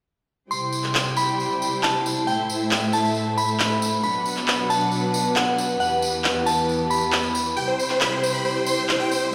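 Played through a big sound system in a bare stone room and bathed in moderate, huge ambient reverb, this bittersweet, emotional uplifting trance excerpt at 136 BPM sets clear, intense bowed symphonic strings with light vibrato on sustained chords over a jingly, distant tambourine and overdriven, layered electronic handclaps, while a crystalline FM synth bell with chorus and digital delay carries a second line through C, Am, Bm and Em until 7.5 s, when lush, detuned supersaw chords with dub echo take the melody up front from 7.6 s.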